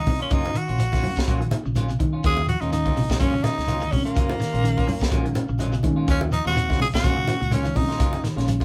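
A swung sixteenth-note afrobeat groove drives this intense clip, built on a tight funk drum kit with a high-tuned snare sitting up front, a dark, round fingered bass, and low-tuned congas and a grainy shekere set back in a small live room. Two clean semi-hollow guitars sit underneath, one fingering arpeggios and the other picking stabs, while a raspy, close-miked tenor saxophone leads with vibrato and scooped notes. An overdriven reed electric piano joins at 2.6 s through a combo amp and plays a fill from 4.6 to 6.1 s.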